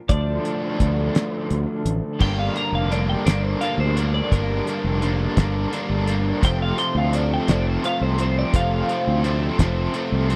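A slow, straight-felt 6/8 sway carries this moody, bittersweet indie rock excerpt, cut from a longer piece. The cloth-damped drum kit sits up front with a thuddy, dark character, a fat snare, a tight kick and dark cymbals, while the overdriven fingered bass growls just as prominently beneath it. Two guitars share the riff: an overdriven electric up front, thickened by analog chorus and slapback echo, and a rawer garage guitar lower in the mix with overdrive and tremolo. Above them, a twangy, compressed twelve-string electric carries the melody through a lush chorus, and from 2.2 s a clean electric guitar solo enters as the harmony moves from D minor to G minor, reaching F at 6.4 s. The dry, close sound recalls a 1970s studio, with little reverb and a bright edge on the guitars and bass.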